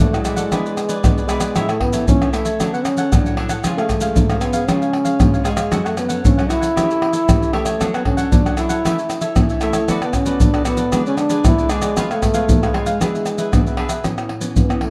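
A breathy, mellow trombone carries the melody in a jazz style, with vibrato and scooped notes, over a lively, festive blend of samba and choro cut from a longer piece. Up front, maracas, pandeiro, tamborim and a deep surdo are played with soft hands in a small room, while a crisp, picked cavaquinho stops at 14.0 seconds and a fingerpicked, classical nylon-string guitar sits in the background. The production is dark and warm with light reverb, and the harmony passes through chords such as Dmaj7, G#dim/D and C#7 before landing on Aadd9.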